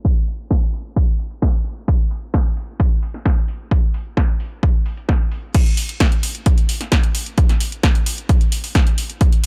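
An electronic kick drum opens this techno excerpt at 0.0 seconds: layered, produced and up front, with a punchy attack and the close feel of a small room. An analog drum machine joins at 0.3 seconds with crash cymbal, hi-hat and snare. Its tape-warm tone sits further back, and low-pass filtering dulls its hats, snare, cymbals and room sound. The groove runs at 131 BPM in a straight 4/4, with an industrial, relentless mood. A filter sweep shapes the opening stretch, then the drop lands at 5.5 seconds and carries through to the close. The overall sound is dry, with little reverb and a low-pass filter rounding off the top end.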